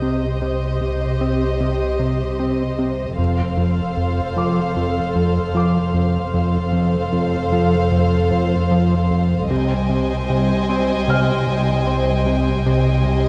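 Tense and ominous, this cinematic suspense cue moves at 76 BPM in C dorian, with its harmony shifting from Cm to F and back to Cm at 9.5 seconds. A fat, detuned sawtooth analog bass carries the riff with a filter sweep and fast attack, over woody bowed double basses and lush background cellos. Softly bowed sul tasto strings sit above them: an intimate, dark violin melody, a floating, pure second violin line, and close, lightly vibrato violas, with high violin texture and a short-sustain grand piano in the background, all in a wet scoring-stage reverb.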